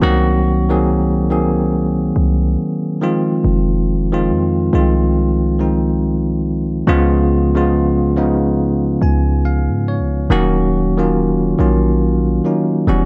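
Sensual and longing, this contemporary R&B excerpt moves at an unhurried pace in 4/4 with a gentle swing on the sixteenths, over chords from Cm7b5 through Fm7 and Db7 to Ebm7. A bright, bell-like tine electric piano sits clean and up front throughout, adding a fill from 8.6 to 10.3 seconds, while a deep, boomy 808-style bass with a sine body, a noise layer, a fast attack and a decaying tail plays underneath. A light reverb gives the whole a soft sense of space.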